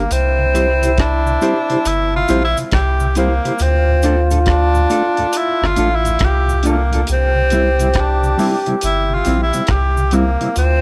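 A breathy, whispered tenor saxophone carries the melody up front with scooped notes and dub echo, while a bright, distant trombone adds a second line in this laid-back, serious roots reggae excerpt at 69 BPM with a swung 16th feel, moving from C to Dm and back to C. A round, deep sub bass sits forward beneath a dry, dark drum kit of kick, hi-hat and rim click, with a clean, fingered electric guitar bathed in tremolo and echo. A flute-like tonewheel organ turns through a slow rotary speaker in the background, a cabasa shakes quietly, and light reverb wraps the whole.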